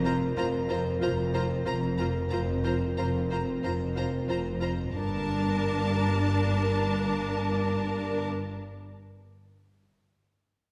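A straight 4/4 pulse at 93 BPM drives this relentless, epic cinematic passage in G minor, cut from a longer piece, where a warm violin section holds a high vibrato melody above a second violin line with a focused edge, lush viola accompaniment, a rich cello bass and a smooth-topped double bass section, while a mellow, distant French horn section sustains chords and barely audible timpani enter at 4.9 s as the harmony moves from Fsus4 to Gmadd9, the orchestra heard from further back in a wet scoring-stage reverb.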